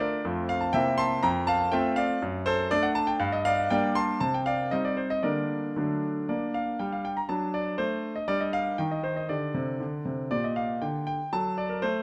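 Classical-period piano sonatina in G minor at 120 BPM in 2/4, serious and dramatic in mood, played by a solo concert grand piano across a range from F2 to C6 over this 12-second cut from a longer piece. The piano sounds clear and polished, with deep bass and short sustain, placed up front by close, detailed microphones within a moderate recital hall reverb. The harmony opens on F and C7 before settling into G minor. A new passage begins at 6.3 s, with a brief chordless moment around 8.8 s, before closing on a tense D7b13.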